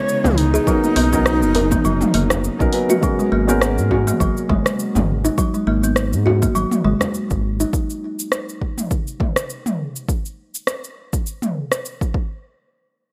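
A breathy, reedy wooden flute opens this hypnotic organic downtempo excerpt with a short vibrato-tinged melody that ends by 2.4 seconds, trailed by digital delay. Beneath it, a felt-muted upright piano adds soft, intimate accompaniment, its action noise audible and its sound pumping against the beat through a low-pass filter. From 3.0 seconds, a filter sweep transforms the piano as the harmony settles on G#m11, just as a very quiet, tense, detuned drone of string-like chords falls away. A woody, thumbnail-plucked kalimba spins vintage-sounding arpeggios through delay until 7.7 seconds, over a round, evolving analog bass with tube saturation. A punchy electronic kick and a layered deep house kit with dark hats, cabasa, rim click and toms drive the groove up front with a light swing, while a deep frame drum rumbles in the background and a light studio reverb surrounds the whole mix.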